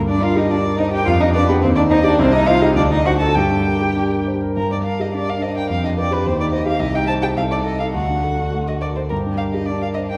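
A quick, cheerful and spirited classical-period piano trio movement in G minor, played with rubato in 2/4 at 98-110 BPM, in which an intimate concert grand piano with deep bass and audible action noise accompanies from 0.0 s, an up-front, smooth-topped violin sings the melody with vibrato and portamento from 0.1 s, and a rich, more distant bowed cello adds an expressive second line, heard in the wet reverb of a recital hall in this passage cut from a longer piece.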